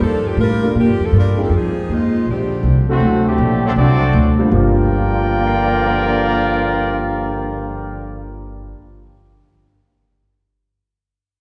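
Heard from further back in a concert hall, this short cut from a longer big band swing piece carries a wet, lingering reverb that gives its sultry, dramatic mood plenty of air. In G minor at 160 BPM with a swung 4/4 feel, it opens with a clear, close-miked saxophone section stating the melody with light vibrato and a soft attack, over a woody, pizzicato upright bass sitting up front. An upright piano with long sustain enters at 0.6 seconds and stays in the background as accompaniment, moving through chords from Gm7 and Fm7 to a Bb13. A tight trombone section joins at 2.3 seconds with a warm second line, and at 2.9 seconds the trumpet section takes over the melody, its smooth top placed up front. The harmony turns to D7 before settling back on Gm7, with the piano ringing on briefly after the horns and bass have stopped.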